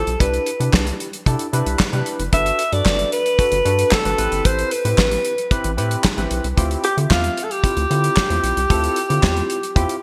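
A breathy alto saxophone carries a smooth, jazz-style melody with vibrato in this danceable early-eighties boogie funk excerpt, over a barky, lightly overdriven tine electric piano with analog chorus, a rubbery, bouncy square-wave bass, and a damped 70s drum kit whose fat snare, tight kick, hi-hat and handclaps sit dry and up front under gated reverb, all moving through Cmaj7, Gmaj9, Am9 and Dm11 in a bright 1980s-style digital production with lush hall reverb.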